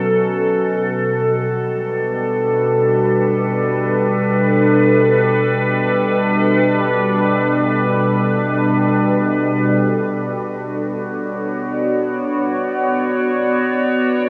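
Spacious and melancholic, this ambient fragment drifts in free time in B minor, tuned to A4 = 445 Hz, carried by a single evolving wavetable pad that sits up front with a mellow, sine-like tone, slow attack and long, sustained release, its chorus and built-in reverb adding a morphing, vintage character. The harmony moves from F#m/B to Gmaj7/B and then settles on Bm7 at 9.7 seconds as the second section opens. A huge, wet reverb and the worn, warbling pitch drift of old cassette tape wrap the sound in hazy studio ambience.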